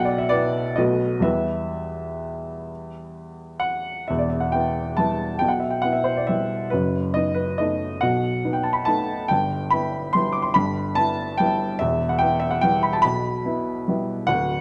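A woody, polished upright piano plays alone, up front and close in a moderate recital hall reverb, through this elegant, wistful classical waltz in E minor, moving in 3/4 with a rubato feel between 121 and 152 BPM, spanning D1 to D6 and shifting into a new passage at 4.1 s of a brief excerpt cut from a longer piece.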